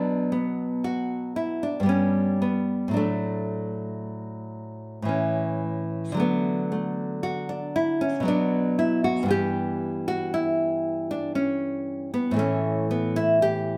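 In an unhurried 3/4 at about 57 BPM, with uneven beats and rubato phrasing, this serene, dance-like baroque-style classical piece in D major is played by a solo nylon-string guitar, fingerpicked between G2 and G4 and tuned slightly low to A4 = 439 Hz. The guitar sits up front with a bright acoustic tone and audible finger squeaks, carried by a moderate large-studio reverb in a live room recording. The passage, cut from a longer work, states its opening phrase twice, the second beginning at 6.2 seconds and moving through D, Bm and Em/G before closing on an A5 chord.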